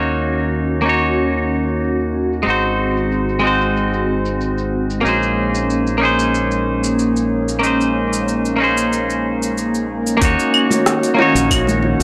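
A clean, twangy electric guitar sits up front, bright and compressed, its picked accompaniment trailing analog delay over a smooth, warm sunset chillout groove at 93 BPM in a straight 4/4. Beneath it, an airy, breathy pad holds sustained chords with a detuned, slow-blooming tone touched by chorus and phaser, while a punchy, direct fingered electric bass anchors the low end. An electronic R&B kit with metallic hats, claves, rim click and shaker carries the rhythm through low-pass filtering, and both the drums and the pad move under a filter sweep until 10.2 seconds. At that point the harmony returns to Ebm7 after passing through Ab7 and Bbm11, a soft electronic kick arrives, and vintage congas and bongos join in the background at 10.7 seconds. The sound is dry and gritty, with little reverb and tuning that sits slightly below standard pitch, and this cut is taken from a longer piece.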